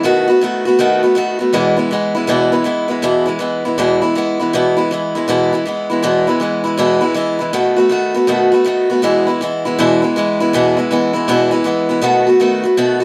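Rock with a rowdy, upbeat spirit, this short cut from a longer piece features a lone picked acoustic archtop guitar playing throughout its 13 seconds. The tempo is a brisk 160 BPM in 4/4, with a 64% swing on the eighth notes that gives the line a loping bounce. Set in E major, the guitar moves between B7 and E, spanning from a low E2 up to F#4. Its tone is bright and boxy, sitting up front in the mix. A moderate studio reverb adds a sense of a shared room, as if the band were playing live together.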